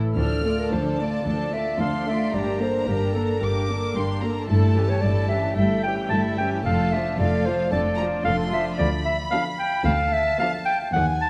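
A dark, warm production sits in a moderate concert hall reverb, giving this short stormy excerpt from a classical-period movement in D minor a rounded, enveloping sound. The symphony orchestra moves at a quick 112 BPM in a straight 4/4, and the mood is urgent as the harmony passes from D minor through G minor and an A7 over G toward a half-diminished chord on D. A violin section carries the melody high above, played sul tasto with vibrato and a soft attack for an intimate, close tone, while a second violin section adds a pure, floating second line lower down. A solo clarinet stands up front with its own second line, its soft-attacked classical tone among the most prominent voices in the balance. Beneath, the viola section supplies accompaniment with a warm vibrato, the cello section gives a rich bass, and the double bass section reinforces it from the background with light vibrato, all bowed gently over the mellow fingerboard.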